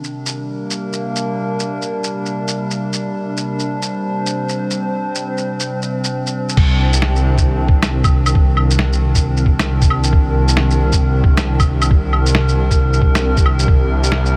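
Nocturnal and melancholic, this future garage excerpt moves at 135 BPM with a swung 4/4 feel in C minor. A warbling, nostalgic pad holds sustained chords from Gm/C into Cm9 with chorus, built-in reverb and sidechain pumping, and a muffled, pitched-down lo-fi kit of claves, crash cymbal, shaker and snare plays beneath it in a small room. At 6.6 seconds a menacing, detuned saw bass with a filter swell and saturation arrives up front, joined by a thumpy, tape-warm electronic kick that stops at 13.8 seconds.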